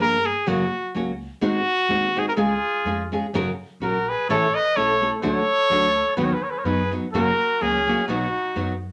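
A lightly swung two-beat pulse drives this proud, festive mariachi excerpt, with fingerpicked nylon-string guitar playing up front on woody old strings and a plucked upright bass sitting low beneath it. A clear, smooth-topped trumpet leads the melody in a classical style, and at 2.4 seconds a second trumpet joins on a supporting line, distant and roomy with vibrato in the background. A wet studio reverb surrounds the group as the harmony moves through bright major chords and a dominant seventh.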